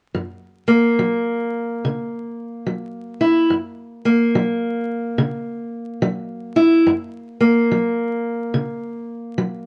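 Vinyl crackle and a light reverb wrap this short fragment of acoustic country blues, its top end rolled off to a dusky haze. A lone fingerpicked steel-string acoustic guitar, dark and boxy with a parlour-instrument character, sits up front from 0.1 to 9.7 seconds. It settles on an F# chord, and the swung 4/4 feel gives it a soulful, swaggering air.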